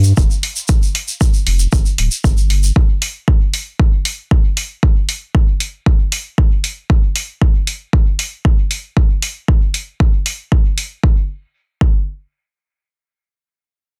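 The sound is dense and heavily limited, with a dry, close modern finish that carries little reverb. This dub techno fragment, cut from a longer piece, moves in a straight four with a cavernous mood. A round, sine-shaped sub bass with a fast attack and sustained tone sits up front, pumping from sidechain compression. Beside it, a grainy, bright egg shaker with a vintage, band-limited character rustles, and both of these parts stop at 2.7 seconds. The electronic kick drum, a layered, deep kick with tape colour, re-recorded in a small room, stays up front from just after the start until 12.0 seconds, joined almost at once by an electronic hi-hat given the same small-room treatment. At 11.0 seconds the piece moves into a new passage, and the kick carries on alone for its final moments.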